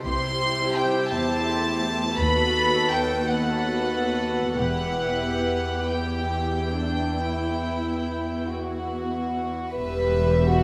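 Opening on a close bed of second violins, woody violas with vibrato and floating cellos, all bowed sul tasto, this solemn, elegiac fragment of a slow romantic string-orchestra movement in a rubato 12/8 brings in a pure, up-front first-violin melody and a rich double bass line at 0.1 seconds, moving from C through B7/D# to an Em chord at 4.6 seconds inside a moderate recital hall reverb.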